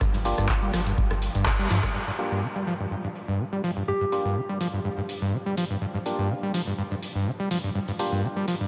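Acid house cut from a longer piece, driving and raw, where a squelchy, distorted acid bass riff sits up front with sidechain pumping and diffuse delay, joined briefly by a round sub bass, a deep kick and a grainy egg shaker until about 1.9 s, while a tape-warm analog drum machine of handclaps, hi-hat and rim click carries on under a filter sweep, a hollow, nasal organ stab with chorus punctuates the background in short, decaying hits, a gentle, keys-like FM lead sounds a single note at 3.9 s, and a huge ambient reverb soaks the whole mix in a dreamy wash.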